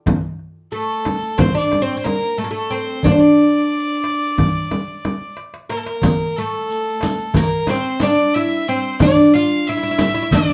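A wet, live-in-one-room studio sound carries this longing, melancholic Turkish makam ensemble in 9/8: a woody, fretless, plectrum-plucked oud sits up front with a bright, airy-bowed violin as a second line above it, over a crisp metal-shell darbuka and a deep, large frame drum played with hard hands, until a drum fill at 5.4 seconds leads into a new section at 6.0 seconds where a vintage riq with dark jingles joins.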